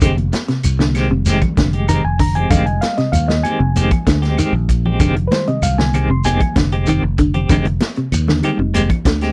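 A straight 4/4 afrobeat groove at 96 BPM drives this intense excerpt in F dorian, anchored by a punchy vintage drum kit and an up-front fingered electric bass, with woody claves in the background, quiet high-tuned congas and a grainy shekere filling out the percussion. A reedy, slightly out-of-tune electric piano with light overdrive takes the solo until 8.8 s, over dark arpeggios from a semi-hollow guitar with lush chorus and twangy, scooped stabs from a clean guitar with tremolo, all resting on a single Fm9 chord. The sound is dry and close, like a 1970s studio session, with the drums rolled off on top.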